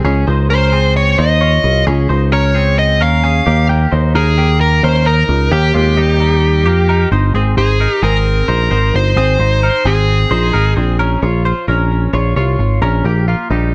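A straight 4/4 pulse at 132 BPM drives this nostalgic, bright jangly indie pop excerpt in Ab major, where a picked electric bass sits round and punchy up front beneath twangy, compressed twelve-string electric guitar arpeggios treated with digital delay, while a dark, overdriven lead guitar carries the melody from 0.5 to 10.7 seconds over chords moving from Db and Eb to Ab and Bbmadd9, all set in a light reverb.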